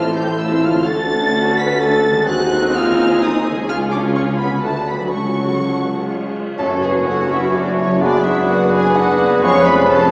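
In a straight triple metre, this urgent, dramatic fragment of a fast romantic orchestral movement sets a dark, woody violin melody over lush second violins, violas with portamento, sustained chords from a mellow French horn section, ringing harp arpeggios, and a bass line of cellos, double basses and a distant tuba, with a very quiet cymbal swell and tam-tam from 3.7 s, before oboe, hollow flutes, clarinet, bassoon and a tight trombone section join on a band accent at 6.6 s, heard from further back in a wet scoring-stage reverb with a small-speaker sound.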